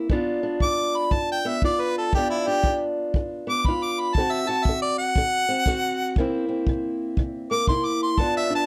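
A dry, close studio sound in a 1970s style, with little reverb, frames this short cut from a longer piece of acoustic country blues, laid-back and swaggering at 119 BPM in 4/4 with a swung eighth-note feel in G mixolydian. A clear harmonica carries the melody up front from 0.6 seconds, its jazz-style solo full of vibrato, tongue slaps and scooped notes, touched by a slapback echo. Alongside it, a fingerpicked, ladder-braced acoustic guitar with old strings, also up front, gives a dark, woody, boxy accompaniment. A punchy kick drum, played with brushes in a small room, sits up front as well. The harmony moves from G7 to D7 at 4.1 seconds and on to C7 at 6.2 seconds, giving the harmonica a loose, strutting blues frame.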